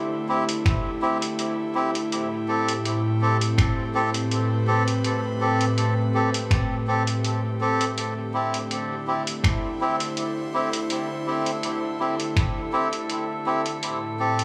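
Hazy and peaceful, this ambient dub piece at 82 BPM sets a breathy, chorused pad holding sustained chords against reedy, nasal melodica stabs with dub echo, a muffled, pitched-down sampler-style kit of finger snaps and hi-hat, and a thumpy electronic kick that drops out at 12.5 s, while a faint glassy texture of drifting overtones slips into the background at 9.0 s, all within a small, echo-heavy room.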